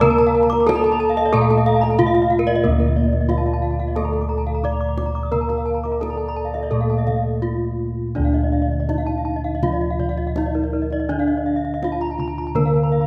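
In a straight 4/4 at 82-92 BPM, this hypnotic, brilliant excerpt of Balinese gamelan in D pelog sets an up-front, wooden-mallet bronze metallophone melody with shimmering paired-tuning beats over dark, round bossed gongs, while a lower horn-mallet metallophone accompanies and two bright, horn-struck metallophones ring out arpeggios, with a soft-handed, tight kendang and an airy, vibrato-tinged bass bansuri second line sitting in the background until the bansuri stops at 7.5 s, all bathed in moderate concert hall reverb.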